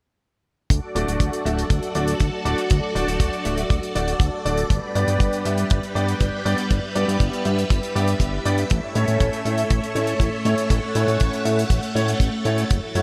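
Opening at 0.7 s, this sunny, danceable italo disco excerpt at 120 BPM in D major sets a tight, up-front kick and dry, airy acoustic hi-hat beneath a fat, detuned sawtooth analog bass with a filter sweep and lush, vintage string-machine chords carrying ensemble chorus, joined at 1.0 s by clear, intimate baby grand piano stabs with audible action noise, ensemble chorus and a low-pass filter, over a D, G, A progression in a bright 1980s-style digital production bathed in moderate hall reverb.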